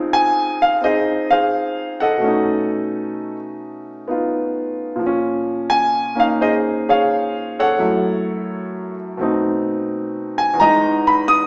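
A warm grand piano carries this short solo jazz passage alone, sounding smooth, vintage and up front across a span from E2 to D#6. The tempo sits at 86 BPM in 4/4, with a swinging eighth-note feel that gives the music a swinging, warm mood. The harmony moves through rich extended chords, opening on Dbmaj9 and passing through Cb9, Bbm9 and Gbm7 before a Cb7b9 leads to a closing Emaj7 at 10.6 seconds. The piano sits in a wet recital hall reverb with a 1.4-second decay, giving the sound the air of a church or concert hall, though the overall tone has a small-speaker quality. Cut from a longer piece, the fragment runs about 11.5 seconds.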